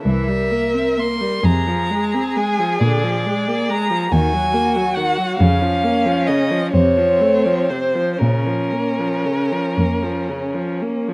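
A second violin and a rich, even viola open this elegiac excerpt from a slow romantic string quartet movement in Bb minor, joined almost at once by a singing first violin melody and a close, up-front cello bass. Moving rubato in a slow 6/8 of roughly 37-47 BPM, the bowed lines carry vibrato, and the violins and cello add expressive portamento, with soft attacks on the second violin and cello. Light reverb and detailed, close miking frame a melancholic progression that drifts from C7 through Fm, Bb7 and Ebm before settling on Bbm at 8.2 seconds.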